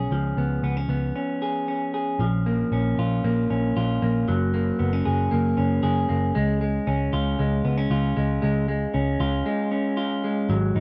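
Jangly indie pop with a bittersweet, restless mood, this excerpt features a bright, twangy electric guitar through a small old amp, picking arpeggios with a slightly broken-up edge from start to finish. Beneath it, an up-front vintage electric bass, muted and picked, adds a dark, round, foam-muted low end as the chords move from C#7 to A#m, F#add9 and C#. The sound is dry, captured outdoors with little reverb and an absence of room ambience.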